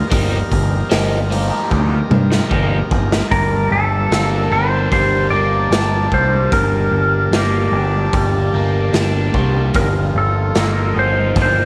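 A lightly reverberant studio sound with a faint mains hum carries this dark, mysterious psychedelic rock excerpt at 75 BPM in G minor, where a growling, up-front overdriven bass, a raw garage drum kit with a punchy kick and a gritty, rolled-off top, a crunchy double-tracked guitar riff through phaser and a buzzy vintage combo organ holding sustained chords open alongside a very quiet, tense string-like drone that stops at 3.4 seconds, before a drum fill from 1.7 seconds leads into a clean, twangy lap steel melody with slide, volume swells and slapback echo from 3.3 seconds.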